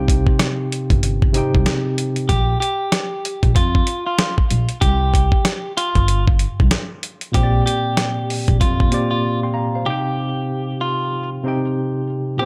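A gritty, sampler-style soul drum kit with a thumpy kick and fat snare drives this reflective, tough boom-bap hip-hop excerpt in C minor at 95 BPM, its 16ths swung and the kit up front beside a woody pizzicato upright bass until the drums stop at 9.1 seconds. A worn, slightly out-of-tune tine electric piano, heard through built-in speakers, colours the opening and returns at 7.3 seconds, while a picked, compressed clean electric guitar carries the melody from 2.3 seconds, bathed in spring reverb and tape echo. The chords move from Cm through Bb5, C5 and Bb6 before settling back on Cm for the closing section, all in a dry room.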